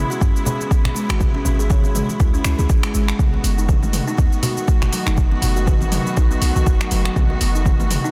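A muted, veiled string section holds dark chords over a deep, boomy 808-style bass from the very start of this earthy, spiritual afro house excerpt at 121 BPM, with the harmony moving from C#m7 to B7 on a swung 16th feel. A buzzing, woody kalimba plays ringing arpeggios through dub echo, pumping under the sidechain along with the strings and bass. An overdriven, up-front electronic kick sits beside a layered deep house kit of cabasa, finger snaps, hi-hat and toms with a softly clipped snare, while very quiet close congas lie beneath, all inside a digital ambience and a dense, heavily limited master.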